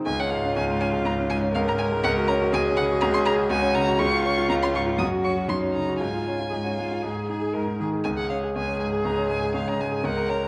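Spirited and cheerful, this brief cut from a longer piece is a quick classical-period movement for piano trio in a straight 4/4. A bright, brilliant grand piano sits up front as the accompaniment, open in tone and spanning from deep in the bass up into the middle register. The violin carries the melody high above, entering at 0.1 s with a rich, expressive bowed line marked by vibrato, soft attacks and portamento. Beneath it, a clear, focused cello plays a close-sounding second line in its upper range, also bowed with vibrato. The trio sounds as though heard in a recital hall with a wet reverb, and the whole recording has the worn, warbling quality of old cassette tape, its pitch drifting unsteadily.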